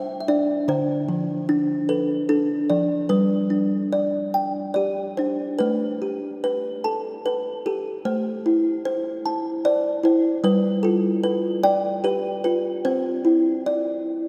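A long, cathedral-like reverb, ringing for about 4.2 seconds, surrounds this recording, which sounds as if it was made in a church or concert hall. It is a short cut from a longer children's lullaby, sleepy and tender, moving in a gentle 3/4 at around 74 BPM with a loose, rubato feel and tuned slightly high, to A4 = 441 Hz. A solo kalimba carries the whole 14.3 seconds, sitting up front with a woody, hollow-box tone and soft, short fingertip plucks that stay mellow across a range from D3 to A5. The harmony drifts from Gsus4 through Dm, G and Gadd9 to Am, then G7, settling on Cadd9 at 12.8 seconds. The close, intimate pluck of the instrument set against the lingering space of the room gives the piece a hushed, bedtime glow.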